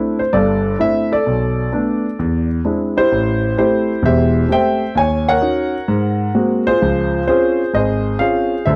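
A concert grand piano carries this brief solo jazz fragment alone, its tone warm and intimate, with deep bass and audible action noise that place the instrument close and up front. The mood is playful and swinging, with eighth notes swung in an easy 4/4 lilt. The piano ranges from E1 up to Ab5. It opens on a C69 chord, moves through Bm7 and an altered E7, then shifts at 3.1 seconds into a second passage that travels from Am7 through Ebm7 and Ab9 to settle on Dbmaj7. The sound is natural and dry, a close 1970s-style studio recording with a moderate small-room reverb. Cut from a longer piece, the fragment ends at 8.8 seconds.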